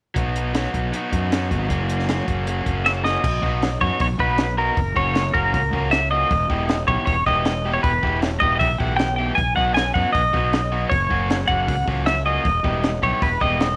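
A straight 4/4 pulse drives this upbeat, jangly indie rock excerpt. It comes from a compact cocktail drum kit with a high-tuned snare, punchy kick, hi-hat and crash, all sounding dark and smooth with a rolled-off top. An overdriven, compressed electric guitar picks out a riff from the first moments, over a growly, fuzzed fingered bass that sits up front. The chords cycle through B, F# and Em. A drum fill at 2.9 seconds brings in a bright, clean twelve-string electric guitar, which carries a twangy melody with slapback echo and sits loudest in the mix. The sound is dry, with little reverb, and the excerpt is cut from a longer piece.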